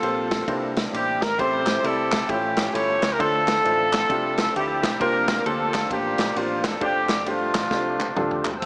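Swung eighths at 133 BPM in 4/4 drive this jubilant, hopeful uptempo gospel fragment in F major, where a clear, tight horn section carries the melody with tape echo over warm grand piano, a very quiet percussive tonewheel organ with slow rotary holding sustained chords, a round hollow-body electric bass, and a natural country drum kit with a punchy kick that plays a fill at 7.7 seconds, while hollow group handclaps join at 1.7 seconds and a dark, woody string section appears only at 8.6 seconds, the whole heard through light studio reverb with a small-speaker sound.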